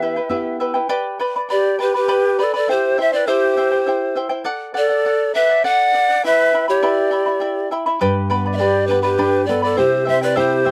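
Festive yet melancholic, this Andean folk passage moves at 101 BPM in a straight 3/4, cut from a longer piece and cycling through Em, G, C and D. A bamboo pan flute with a reedy chiff carries the melody up front, joined by a large end-blown wooden quena whose breathy, slightly unsteady vibrato forms a close-miked second line. Beneath them a bright, shimmering charango with doubled strings is fingerpicked throughout, while a deep classical nylon-string guitar sounds only briefly at the opening and returns at 8.0 s, all set in a dry, close 1970s-style studio sound with light reverb.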